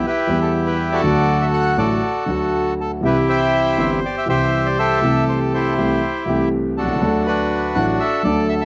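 A dry, close recording in a small room with a 1970s studio character gives this brief tango fragment an intimate, sultry air. The bandoneon carries the melody from the very start, its reedy, bright voice sitting up front as it ranges from D4 to G5. A dark concert grand piano joins at 0.3 seconds with accompaniment that reaches down into deep bass, its mellow, smooth tone carrying a vintage quality and audible action noise. The feel is rubato, letting the passionate line breathe over a harmony that moves from E minor through D and C to A minor seventh over C before settling back on D. Both instruments play through to 8.7 seconds, where this piece of a longer work is cut off.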